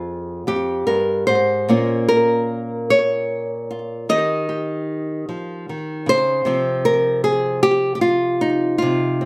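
Intimate and haunting, this short cut from a longer folk piece features a solo fingerpicked nylon-string guitar, moving slowly at 50 BPM in a straight 6/8 feel. The guitar sounds small, acoustic and up front, ranging from F2 to Eb5 across a progression of Fmadd9, Bbm, Eb and Csus4. A slapback echo on the guitar and a moderate studio reverb give the brief passage its lingering, ghostly air.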